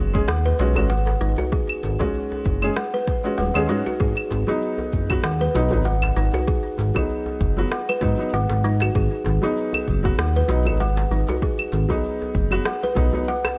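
Woody, ringing kalimba arpeggios with tape echo sit up front in this earthy, meditative organic downtempo excerpt at 97 BPM with a swung 16th feel, moving from G#m7 to B at 4.0 seconds. A smooth, detuned synth bass blending sawtooth and square tones, also up front, carries the low end beside a felt-muted upright piano whose soft, intimate accompaniment has audible action noise, tape echo and sidechain pumping. A deep, layered electronic kick, tape-warmed electronic shaker, rim click and claves, a tight, cracking djembe in the background and a barely audible bronze singing bowl with slow beating fill out the small room.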